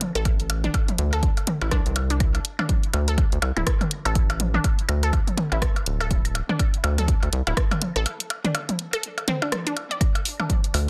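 This sparse, clinical minimal techno excerpt at 123 BPM with a swung 16th-note feel opens with an overdriven garage kit of hi-hat and rim click alongside tape-echoed electronic toms, blips and claves. They are quickly joined by a rubbery, hollow square-wave bass that pumps against the kick, a squelchy, resonant blip-pluck riff running through phaser, sidechain pumping and dub echo, and a punchy, up-front analog kick, with a break from 8.1 to 10.0 seconds, all set in a dry, dense and heavily limited modern mix.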